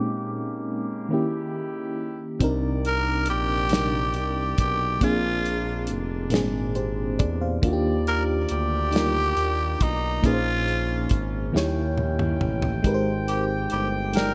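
Yearning and late-night, this slow six-eight R&B excerpt opens with a brief break under a filter sweep, as a raspy, growling tenor saxophone with digital delay sings over a dark FM electric piano with tremolo and a distant, roomy brass ensemble holding sustained chords. At 2.4 seconds, a smooth sawtooth synth bass and a dry, damped 70s drum kit with gated reverb and a tight kick come in up front, with the drums adding a fill at 11.5 seconds. The bright 1980s-style digital production is softened by a low-pass filter and light studio reverb, while the harmony drifts through lush minor, seventh and ninth chords.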